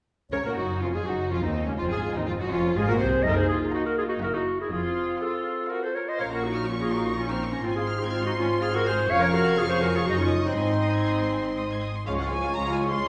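A clear, smooth-topped clarinet carries a second line with a soft attack through this urgent, dramatic excerpt from a quick classical-period movement for symphony orchestra, set in 3/4 at 123 BPM with a straight feel. Two chamber violin sections enter at 0.3 s: one sings the expressive melody with vibrato and portamento, while the other traces a focused second line that reaches high. Beneath them, a distant viola section supplies even accompaniment, a dark French horn section holds roomy sustained chords, and cellos and an expressive, close double bass section share the bass. The music begins in Bb minor and turns toward Db major from 9.1 s. At 12.1 s, a brief new section opens on a Db chord, adding a pure, hollow flute in the background, a very quiet and distant oboe, and a mellow bassoon with light vibrato. A recital hall reverb lends the orchestra a wet, spacious sound.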